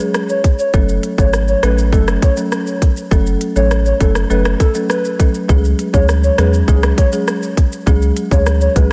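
Set in a light reverb, this bouncy, tough dancehall excerpt opens on a woody, close-miked folk marimba with sidechain pumping, joined within the first second by a tight, crisp electronic island pop kit of kick, hi-hat, rim click and shaker, a hollow, mellow clarinet-like synth lead carrying the melody with chorus, delay and vibrato, and a deep, round analog bass with a filter sweep, over chords moving from C#sus4 to F#m and back to C#sus4 at 5.5 seconds.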